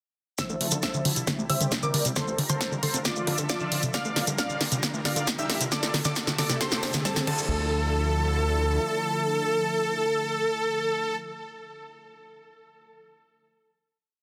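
Emotional and driving, this uplifting trance piece in D minor at 135 BPM builds until 7.5 seconds, with a huge, detuned supersaw melody in thirds and sixths and a pumping pluck arpeggio both under filter sweeps, a punchy big-room kit of snare, hi-hat and crash over a four-on-the-floor electronic kick, grainy hand-played maracas, a very quiet riser and a fat rolling analog bass, while a silky chorused string pad and a lush pluck doubling the melody an octave higher carry on into the final hit that rings out to 11.2 seconds.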